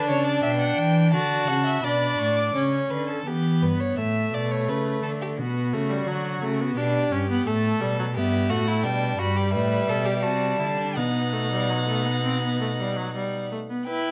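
In a straight 4/4, this contemplative, serious baroque-style fugue for string quartet, cut from a longer work, sets a bowed first violin melody with warm vibrato, soft attacks and expressive portamento against a smooth, even second violin that carries its own line throughout. The first violin sings briefly at the opening, falls away at 2.5 seconds and returns at 8.2 seconds. Beneath it, an up-front viola with an airy, intense bow and a rich, expressive cello bass with gliding portamento fill out the harmony until the cello stops at 13.5 seconds, all within the moderate bloom of a recital hall.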